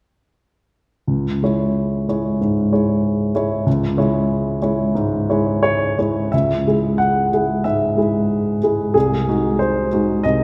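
Set at 92 BPM in 4/4 and played with a free, rubato pulse, this romantic character piece for solo piano unfolds in C# minor with a stormy, brooding mood. A baby grand piano carries the whole fragment from 1.1 to 10.4 seconds, ranging from B#1 up to F#5, its tone intimate and natural, with audible action noise adding a close, tactile quality. The instrument sits up front, bathed in the wet reverb of a scoring stage with a 1.8-second decay that lends the sound a spacious halo. The music opens on C#m and moves into a contrasting section at 6.3 seconds, arriving on G#7/B# at 8.9 seconds. Cut from a longer work, the passage breaks off on that unresolved harmony, leaving its dark tension hanging.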